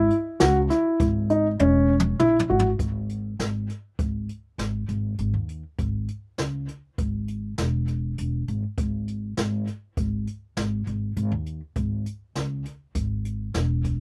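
Tense and intricate, this progressive instrumental excerpt moves at 100 BPM in 5/4, opening with dark, mellow baby grand piano arpeggios carrying a slapback echo that stop at 2.7 seconds, while a woody pizzicato upright bass holds the low end throughout and a brushed jazz kit with a boomy kick plays a fill from 1.6 seconds before settling under shifting harmonies from G#5 to E and E6, all in a dry outdoor sound.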